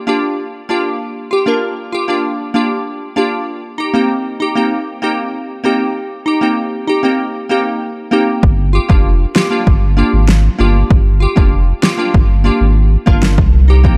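A glassy wavetable pluck with a chorus sheen and a filter sweep opens this tough, hypnotic dancehall excerpt, cycling between Gm7 and Cm7 over a dark, lightly reverberant production. At 8.4 seconds a thick, saturated sub bass and a punchy, overdriven deep house kit with a fat snare arrive up front together and carry the groove to the cut at 14.0 seconds.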